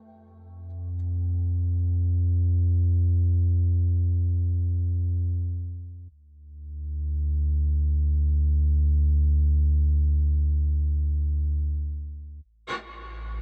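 Luminous and serene, this short ambient excerpt floats in free time in F major, tuned slightly sharp of standard pitch. A felt-muted upright piano opens with soft, mellow arpeggios, intimate and up front, its audible action noise adding a close, tactile quality, but it plays only through the first second. A deep, round sub bass with a sine-like tone, fast attack and sustained body carries on alone until 13.4 seconds, sitting up front beneath everything. The harmony rests on F before giving way to an open, chordless stretch at 6.1 seconds, then lands on an A5 at 12.4 seconds. The production is dark and warm with little reverb, keeping the sound dry and near.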